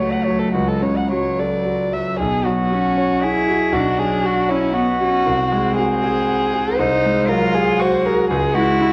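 A single dark, woody violin carries the melody up front, its bowed line smooth on top and colored by vibrato, while a single distant cello, played sul tasto with a soft attack, floats a rich, pure second line beneath it. A clear, intimate grand piano accompanies close by, its boxy tone revealing audible action noise, as this reflective, longing neoclassical fragment moves in a rubato 3/4 at 118 BPM in B dorian, tuned to A4 = 438 Hz. The whole recording sits in a moderate recital hall reverb and carries the worn, warbling pitch drift of old cassette tape, with the harmony shifting at 2.2 seconds from F#m/C# to Bmadd9 before passing through G#7/B# and settling on C#m.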